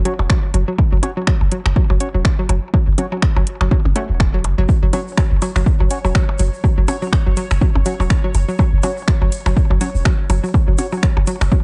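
A dark, digital-sounding mix with a cool, sparse mood opens this minimal techno passage at 123 BPM in 4/4, with a swung 16th-note feel over an F#5 chord, cut from a longer piece. An overdriven electronic kick sits up front beside a deep, punchy sine sub bass with a pitch-drop attack and sidechain pumping, while an overdriven house kit of finger snaps and metallic hats, re-recorded in a large room, joins delayed percussion blips. A hollow, bouncy square-wave pluck riff with chorus and digital delay and a mellow, wave-folded organ stab with phaser fill out the arrangement, before a grainy egg shaker enters at 4.7 seconds and a bubbling, resonant sawtooth texture with random filter steps and reverb slowly fades in, in the background, at 5.1 seconds.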